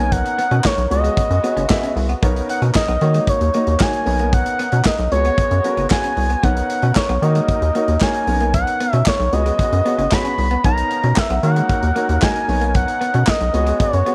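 Feel-good and danceable, this 114 BPM early-eighties boogie funk passage in B major rides a rubbery, bouncy square bass and a tight, polished studio drum kit with handclaps, hi-hat, kick and snare, while a smooth sawtooth synth lead with chorus and vibrato carries the melody up front over a boxy grand piano, a dark picked electric guitar riff bathed in lush chorus, and reedy, shimmering musette accordion chords in the background, the harmony cycling through Bmaj9, C#7sus4 and D#m7 in light reverb.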